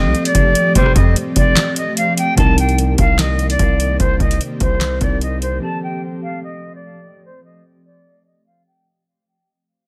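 Hip hop with a trap edge, this brooding, melancholic excerpt moves at 148 BPM in a half-time feel, tuned slightly below standard pitch. A pure, vibrato-tinged concert flute carries the melody through a low-pass filter and tape echo, sitting up front yet sounding distant, over a bell-like tine electric piano heard as if through built-in speakers and an ethereal, detuned pad held in the background with chorus and reverb. A booming analog drum machine with a deep kick, crisp snare, claps, rim clicks and metallic hats drives the opening alongside a heavy, saturated 808-style bass. A dark, hushed chamber string section, bowed sul tasto, adds a brief stab just before 1.0 s. After a break at 1.6 s, the harmony shifts from Fadd9 to Cm7 at 2.4 s as a filter sweep and fade-out begin. The drums and bass drop away by 5.6 s, leaving flute, electric piano and pad to drift back to Fadd9 to the close.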